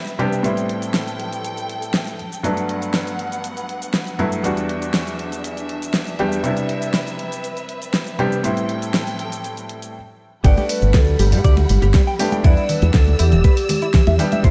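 Nu-disco with a feel-good, groovy lift, cut from a longer piece, opens on a brilliant, worn baby grand with audible action noise pumping under tape echo beside distant, lush bowed strings carrying grainy sampler grit and a pop kit with a fat snare and bright hats, until the drop at 10.4 seconds brings in a thumpy, up-front electronic kick, a fingered bass with an envelope filter, a dark, slightly broken-up guitar riff with subtle chorus and a ringing vibraphone melody with delay, joined a moment later by thick-skinned congas in the background, all over a dark, small-room production cycling through Am7, Gmaj7, Em7 and Cmaj7.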